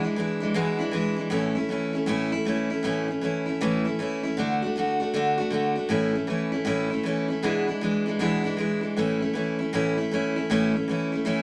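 Rowdy and retro, this short rock excerpt, cut from a longer piece, rides a brisk 157 BPM in 4/4 with a 65% swing on the eighth notes. A single picked steel-string acoustic guitar carries everything on its own, a dreadnought with a bright, full-bodied tone sitting up front in the mix. Its playing ranges from a low E2 up to F#4, moving through a simple A major progression of E7, A, D, A, E7 and back to A. A brief opening passage gives way at 2.8 seconds to a longer second section that runs to 11.4 seconds. A moderate small-room reverb adds a touch of space around the guitar while keeping it close and lively.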